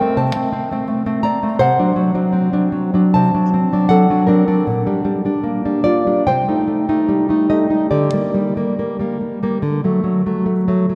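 Romantic solo classical guitar in a melancholic, passionate mood, this short excerpt features a thumb-plucked nylon-string guitar, up front with finger squeak audible, moving with rubato freedom through minor-key harmonies that settle on a D chord at 9.6 seconds, all bathed in the long, echoing reverb of a vast cathedral.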